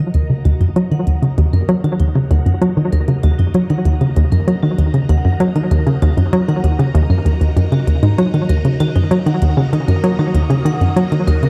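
A mysterious, expansive stretch of ambient, sequencer-driven space music, cut from a longer piece, built over a single Eb minor chord in a dark production with a moderate plate reverb. Up front, a hollow, bouncy square-wave pluck with chorus and analog delay repeats a low riff, while a swirling, vintage string machine with ensemble chorus and phaser holds sustained chords and fades in. In the background, a metallic vibraphone struck with hard mallets rings out delayed arpeggios with a fast motor vibrato, and overdriven, clicky electronic hi-hats and percussion blips creep in gradually.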